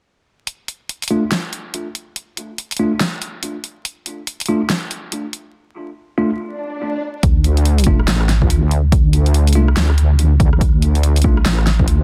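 Meditative and dark, this deep dubstep fragment, cut from a longer piece, moves with a swung, half-time feel. A deep house drum kit of hi-hat, rim click and a fat snare opens at 0.5 seconds, joined shortly after by bell-like tine electric piano stabs that sound clean and bright, softened by a low-pass filter and trailed by dub echo over a D minor chord. An electronic swell sounds just before the second part begins at 7.2 seconds. There a heavy, saturated wobble bass arrives up front, its detuned sawtooth and sine layers thickened with chorus yet mellow at the core, alongside a punchy, layered electronic kick as the harmony settles onto a bare D fifth. The mix sits in light reverb with a dense, heavily limited modern master and a bed of vinyl crackle.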